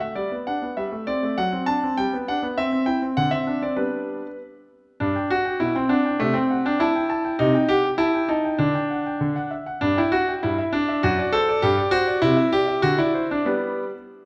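A brilliant concert grand piano opens this playful, elegant classical-period sonatina in G major, moving at 100 BPM in a straight 2/4 and playing alone from 0.0 to 13.9 seconds across a range from F#2 to B5. Its tone is polished and up front, with deep bass and short sustain, set in a wet recital hall reverb that lingers about 1.6 seconds. A fresh phrase begins at 5.0 seconds and wanders through suspended and ninth-chord colours before settling back on G, in a passage cut from a longer piece.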